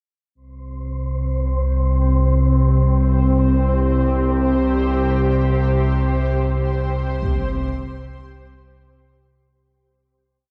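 An ominous, vast dark ambient drone piece in free time opens with an up-front analog drone at 0.7 seconds, its sawtooth and pulse-wave tones warbling through chorus. A breathy, wind-like tuned noise layer holds a single high note, and a cloudy, blurred granular pad drifts through slowly shifting chords in its own reverb. The whole piece fades out from 4.9 seconds, while a huge, bright but distant impact lands low-pass filtered at 7.2 seconds within a dark production under light reverb.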